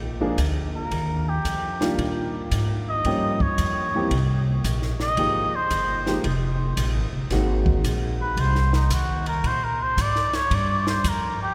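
Small-group swing and bop jazz with a late-night, swinging mood, this brief 11.5-second cut from a longer piece features a cup-muted trumpet up front, playing a soft, veiled solo with vibrato, scooped notes and a vintage touch. A woody, pizzicato upright bass sits prominently underneath, while a warm upright piano with long sustain comps until 8.8 seconds and a compact cocktail kit adds dark cymbals, a high-tuned snare and a punchy kick. The whole group rings out in a church or concert hall, bathed in a wet cathedral reverb.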